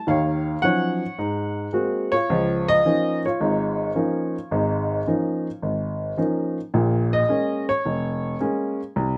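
An intimate, woody upright piano carries this short solo jazz passage cut from a longer piece, sitting up front with its action noise clearly audible under light reverb. The swung playing feels playful and sophisticated, moving through Ebm9, Ab9 and Db69. At 6.7 seconds it shifts to a new section on Bbm7, and the piano carries on until the cut at 9.2 seconds.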